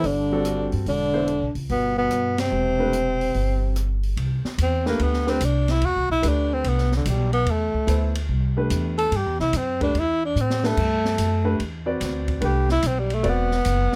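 A hypnotic, spiritual modal jazz piece with a swung feel opens with breathy, whispered tenor saxophone and a mellow trombone line over a smooth vintage-toned grand piano, thumpy pizzicato upright bass with gut strings and an open acoustic drum kit with dark cymbals and a boomy kick, before the trombone drops out at 4.0 seconds and the intimate, scooped-note saxophone takes a solo from 4.2 seconds, punctuated by a drum fill at 10.4 seconds, all captured in a dry, close and detailed sound.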